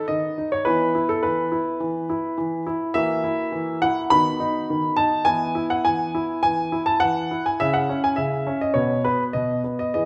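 A classical-period piano sonatina in E major, this cheerful, graceful passage moves at 104 BPM in a straight 4/4 and is cut from a longer piece. A clear grand piano plays solo from start to finish, ranging from B2 up to B5, its tone clear and present with a long sustain, and it sits up front in the sound. The harmony opens on B over D#, passes through an F#7 over E around 3.0 seconds, settles on E at 5.3 seconds, and turns briefly to C# minor before closing on a bare B fifth. A moderate recital hall reverb, with a decay of 1.4 seconds, lends the instrument a natural sense of space. The mood stays cheerful and graceful throughout these ten seconds.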